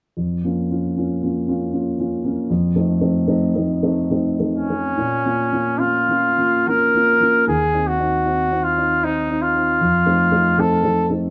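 A light reverb lends a gentle sense of space to this short cut from a longer romantic classical duo for trumpet and grand piano. The piano opens alone at 0.2 seconds, its dark, mellow accompaniment placed up front and moving in a flexible, rubato triple metre. At 4.5 seconds the trumpet enters with the melody, played solo in a classical style with light vibrato. Its mellow, roomy tone feels both close and somewhat distant, and it sits slightly above the piano in the balance. The overall mood is yearning and solemn, with both instruments carrying on together until the trumpet finishes at 11.1 seconds, just before the piano's final sound at 11.3 seconds.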